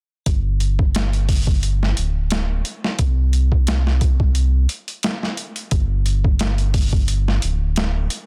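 Smoky and dark, this short trip hop cut at 88 BPM with a light 16th-note swing pairs a round, deep analog bass of sawtooth and sine tones, up front with fast attack and sustained notes, with a gritty, pitched-down boom bap sampler-style kit of thumpy kick, high-tuned snare and hi-hat, overdriven and compressed with a small room reverb, all sealed in a dense, heavily limited modern master.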